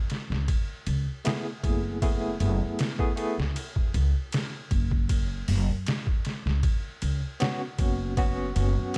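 A lightly swung sixteenth-note groove in four sets a slow pulse for this trip hop excerpt, played on a sampler-style drum kit of hi-hat, ride cymbal, thumpy kick and medium-tuned snare that sounds compressed, pitched down, gritty and tape-warm. An upright bass enters at 0.3 s, plucked pizzicato on steel strings with a woody, growly acoustic tone that sits up front in the low register. At 1.2 s a barky tine electric piano joins through a combo amp, its clean voicings colored by tremolo in the middle register. The harmony rests on a minor eleventh chord before shifting to a suspended chord at 5.1 s, lending the passage a cinematic, melancholic hang. A dark digital ambience surrounds the three parts, which all sit close and forward in the mix.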